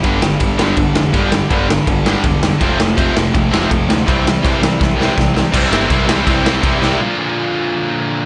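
A dry sound with a dulled top end frames this rowdy, upbeat punk rock excerpt at 164 BPM, where a raw garage drum kit with a boomy kick, medium-tuned snare and dark crash cymbal sits up front beside a scooped, compressed distorted electric guitar riff, while a sludgy overdriven guitar and a tight double-tracked distorted guitar riff in the background over a growly fuzz-picked electric bass, moving through G5, F and C chords with a drum fill at 4.8 seconds before the band drops out at 7.0 seconds and the distorted electric guitar carries on alone over a Bb until 8.3 seconds.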